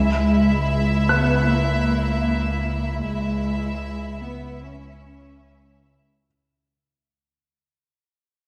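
Cinematic suspense score in free time and D-flat minor, this tense, uneasy fragment opens with floating, sul tasto violins, intimate dark cellos with light vibrato, woody double basses and a deep sine-and-triangle sub bass drone, all sustaining from the start. A grand piano with long sustain enters at 1.1 seconds, placing a high G-flat over the low strings. The passage sits in a wet scoring-stage reverb with a church or concert hall character and fades out across its full 6.3 seconds.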